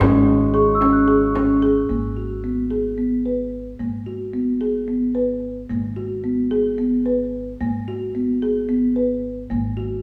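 A mellow, woody folk marimba sits up front, playing soft-mallet arpeggios through nearly the whole of this urgent, hypnotic excerpt of contemporary chamber music in 7/8 at 221 BPM, in G# minor. Underneath, a growly pizzicato upright bass anchors a low G#1, while a dark, distant woodwind section with vibrato holds sustained chords over F#sus2/G# until the move to G#m7 at 1.9 s. A small, bright frame drum adds close, dry percussion up to 1.6 s, and a bell-like, delicate celesta rings out high until 2.4 s, all set in a wet recital-hall reverb.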